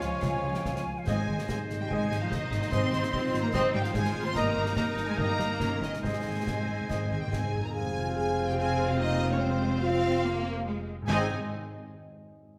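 A full orchestra opens this heroic, adventurous film-score excerpt at once, with a bowed violin section carrying the melody in a lush, focused tone while a second, richer violin line, a clear viola section and airy flutes sit in the background. A bright, present solo oboe and a mellow solo clarinet add woodwind lines, while distant, roomy French horns and a very quiet, soft-attacked trombone section hold sustained chords beneath dark, tight trumpet stabs. Low strings anchor the bass, the cellos expressive with vibrato and the double basses more distant, and a concert harp rings out thumb-plucked arpeggios across a broad span. Concert snare, bass drum and bright clash cymbals drive the first 7.5 seconds, and round, calf-headed timpani played with soft mallets sound at 1.1 seconds and return for a fill from 6.0 seconds. The woodwinds and drums drop out as the harmony moves to F minor, leaving strings, brass and harp to carry the passage within a reverberant recital-hall ambience.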